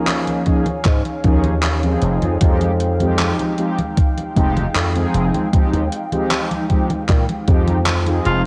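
A mellow synth brass with a round, detuned sawtooth tone and tape echo opens this melancholic, woozy vaporwave excerpt, over a warbling, nostalgic pad that sits lo-fi in the background on Eb9sus4 moving to Fm9. Gated 80s digital drum machine congas, handclaps and hi-hat carry overdriven 12-bit sampler grit alongside a thumpy up-front electronic kick, and a growly, punchy slap bass with an envelope filter joins at 0.9 s. A raspy tenor saxophone cuts in on a single forceful note at 8.3 s, just as the clip ends, all wrapped in light reverb and cassette tape haze.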